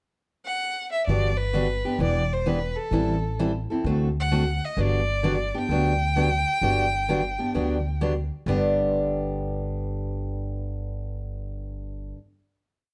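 A bowed violin opens this charming, lively acoustic string swing piece at 0.5 s with a pickup phrase, its tone rich and focused with vibrato and a smooth top. At 1.1 s a picked steel-string jumbo acoustic guitar and a pizzicato upright bass enter together. The guitar plays four-to-the-bar rhythm with short strokes accented on two and four, and it sounds full-bodied, with audible finger squeak. The bass plays a woody two-beat root and fifth line. At 130 BPM in G major with a swung eighth-note feel, the violin sings motif-based, song-like phrases over a Gmaj7, Em7, Am7, D7 progression. The piece settles on a final G chord from 8.5 s, carried by the guitar and bass. All three parts sit up front in a dark, warm production with moderate studio reverb.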